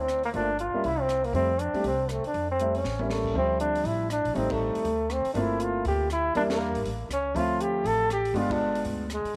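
Small-group swing and bop jazz at a brisk 240 BPM in 4/4, with a swung eighth-note feel and a sophisticated, swinging mood, cut from a longer performance. A clear, forceful trombone carries the melody up front, its light vibrato and touch of tape echo giving it a distant, roomy quality. Beneath it, a woody pizzicato upright bass on steel strings anchors the low end, while a concert grand piano accompanies with an intimate, natural tone, deep bass and audible action noise. A compact cocktail kit sits low in the mix, dry with dark cymbals, a high-tuned snare and a punchy kick, and it plays a fill at 2.9 seconds just before the tune shifts from F major into D minor at 3.4 seconds. Through the second half the band hits several accents together over rich harmony such as Dm11, Gm11 and G7b9, and the group sits in a moderate spring reverb with small room ambience.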